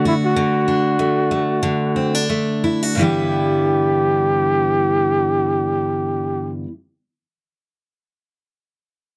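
A breathy, dark trumpet with vibrato and scooped notes sings an intimate, heartfelt pop melody over a full-bodied picked steel-string acoustic guitar with audible finger squeak, in an easy-going G major excerpt of 86-98 BPM with a light swing that slows down over its first 3.0 seconds, captured with light reverb in a dry, close 1970s-style studio sound.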